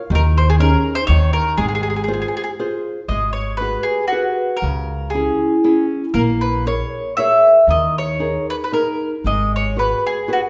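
A three-beat pulse with a straight feel carries this short cut from a longer Italian folk serenade, whose mood is wistful yet passionate. The mandolin sings the melody up front, its picked double strings giving a round, warm voice. Beneath it, a small-bodied nylon-string guitar is fingerpicked on old strings for a woody accompaniment, while a pizzicato upright bass on gut strings supplies a thumpy low line. After opening on a suspended chord that resolves toward a bright major sixth, the harmony turns to the minor at 3.1 seconds, moving through darker seventh and half-diminished colours before settling back on the minor seventh. A wet recital-hall reverb surrounds the three acoustic instruments, lending the playing a sense of space.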